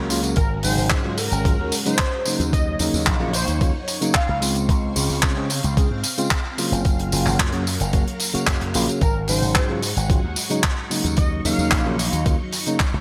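A thumpy, up-front electronic kick and a dry, dark 70s drum kit with handclaps, hi-hat and tambourine drive this groovy, feel-good nu-disco excerpt at 111 BPM in Ab mixolydian, under a punchy, bright slap bass through an envelope filter, a mellow tine electric piano with delay and lush string-machine chords pumping against the kick, while a thick, detuned unison lead with vibrato carries the melody from 0.4 to 4.4 seconds and returns at 9.0 seconds, all in a bright 1980s-style digital production.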